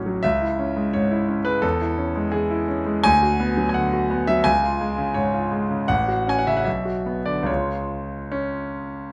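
Passionate and hopeful, this short excerpt from a romantic character piece for solo piano unfolds in 2/4 with a supple rubato, its tempo flexing between 69 and 87 BPM. A bright concert grand carries everything alone from 0.0 to 9.1 seconds, its brilliant treble and deep bass spanning A1 to G#5 with a smooth, vintage character. Close, detailed microphones place the piano up front, while light reverb adds a touch of space around it. The harmony moves from C#m through C#m/E and Bm/D to a C# chord at 4.5 seconds, then passes F#m/A and Bm before settling again on C# at 7.5 seconds. The tuning sits at A4 = 439 Hz, and the passage is cut from a longer piece.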